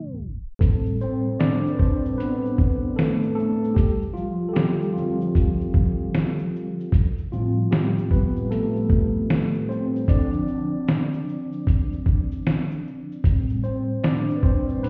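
Lo-fi hip hop in A minor at 76 BPM with a swung 16th feel, nostalgic and melancholic, cut from a longer piece and sounding as if heard muffled through a wall in a stone room. A tine electric piano, clean and filtered as though through built-in speakers, opens with a brief fill under a tape stop, then takes the lead at 0.6 seconds over chords moving between Am7 and Dm7. The up-front sampler-style drum kit enters at the same moment with hi-hat, shaker, a thumpy kick and fat snare, pitched down and compressed with 12-bit grit and a tape-like warmth.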